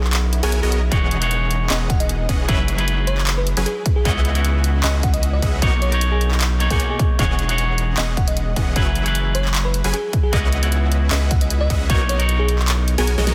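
The bell-like FM electric piano stands out, carrying a sparkling melody that enters at 0.4 seconds, colored by chorus, phaser and digital delay and pumping with the sidechain. This euphoric, playful future bass excerpt moves in a half-time feel, cycling through rich chords from Bmaj9 through Emaj13, F#9sus4 and C#m11. A punchy, detuned supersaw stab plays a pumping riff with a filter sweep, while a deep, thick saturated sub bass sits up front beneath it. A clean, picked electric guitar joins at 0.9 seconds with tape echo, alongside a layered electronic kick that drops out near the end as a drum fill arrives at 13.2 seconds. A big-room kit supplies handclaps, hi-hat and a huge snare, and a very quiet shimmering, ethereal pad and a brief electronic swell fill the background of a dense, heavily limited master with light reverb.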